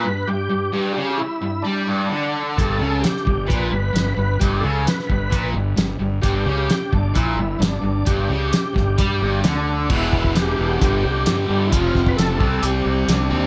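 This sunny, swaggering classic rock excerpt in G mixolydian at 131 BPM opens with a thick, gritty overdriven tonewheel organ carrying the melody through a slow rotary speaker and chorus vibrato, its key click audible over riffs from a bright overdriven electric guitar and a lo-fi garage guitar tinted by phaser. At 2.6 seconds a round, punchy fuzz bass and a muffled, cloth-damped drum kit with a fat snare, tight kick and dark cymbals join up front. The harmony sits on G before turning to Em at 9.9 seconds and moving through G5, F5 and C5, all under light reverb and a faint mains hum.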